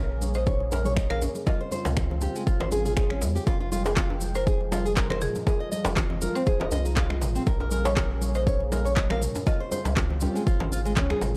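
Afro house at 120 BPM in F minor, this spiritual, driving excerpt from a longer piece sets a fingerpicked nylon-string guitar's arpeggios and a buzzing, woody hard-mallet marimba melody over a warbling, detuned analog pad, a round sine sub bass, an overdriven deep kick up front, a deep house kit of finger snaps, handclaps and toms, background congas and djembe, and a grainy cabasa, all in a dry, gritty small-room sound, with the drop landing at 3.5 s on Fmadd9 before moving through Bbm7 and Dbmaj7.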